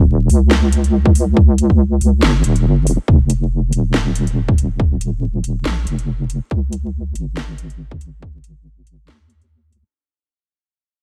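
A deep, detuned wobble bass with chorus sits up front from the start of this brooding, heavy deep dubstep excerpt, opening on a drop before a filter sweep and fade-out take over from 3.1 seconds. Beneath it, a garage drum kit enters at 0.3 seconds with a cracking snare and metallic hi-hats, and a tight electronic kick drum arrives at 1.1 seconds in a swung, half-time feel. The mix is dry, with a layer of vinyl crackle.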